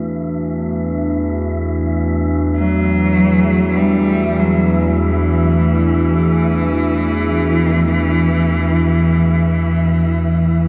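A rich, focused cello played by one bowed player enters at 2.6 seconds, singing a smooth-topped melody with vibrato between E3 and G3, carried up front and trailed by delay. This is an unsettling, cavernous dark ambient drone in free time, cut from a longer piece and tuned to A4 = 444 Hz, resting on an Esus2 chord. Beneath it, an up-front analog drone built from sawtooth and pulse waves with pulse-width modulation fades in from the start, its evolving, chorused tone spanning E2 to E3. A deep, moody analog pad of square, sawtooth and triangle waves with a sub octave also fades in, holding sustained chords from E3 to F#4 through chorus and phaser. High above, an airy, breathy, wind-like noise texture on E5 fades in too, sitting faint in the mix with its own reverb. The whole recording sits in a wet cathedral reverb with a 6.3-second decay, placing it in a vast, echoing space.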